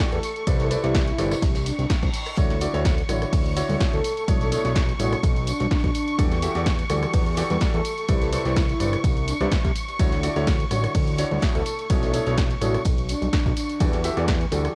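A fat, saturated analog bass with a nasal, detuned edge sits up front and pumps against a punchy electronic kick in this euphoric, feel-good piano house excerpt, cut from a longer piece and swung lightly on the sixteenths. A grand piano riff with long sustain and lush bowed strings carry a Cmaj9, Dmaj9, Bm11, Em11 progression, both pumping with the sidechain. Meanwhile a breathy, flute-like synth lead with chorus and vibrato sings the melody over a tape-warm analog drum machine, a very quiet arena drum kit, soft tambourine and congas, and a brief reverse cymbal at 1.7 seconds, all with the character of a cassette home recording in light reverb.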